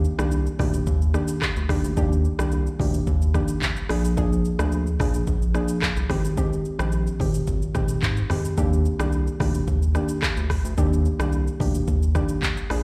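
Heard as if played over a big sound system in a bare room, this short afrobeats excerpt carries a light wash of large studio reverb and a sunny, joyful mood. It moves at 109 BPM in a straight 4/4 in Eb major, with the bass and an electronic afro-pop drum kit starting together at 0.0 s. The kit is produced and tape-warm, with a deep kick, smooth hi-hats, handclaps, rim clicks, shaker and toms sitting up front. A round analog bass, built from square and sine waves with a wave-folded edge, holds a mellow, sustained and evolving low end with a fast attack. From 0.2 s a soft pluck enters, gentle and dark, mixing triangle, sine and detuned sawtooth tones with a noise layer, a filter sweep and chorus, each note decaying after a fast attack. The harmony moves from Ebmaj7 to Bb7, then Abmaj7, and back to Ebmaj7 before the clip ends at 12.8 s.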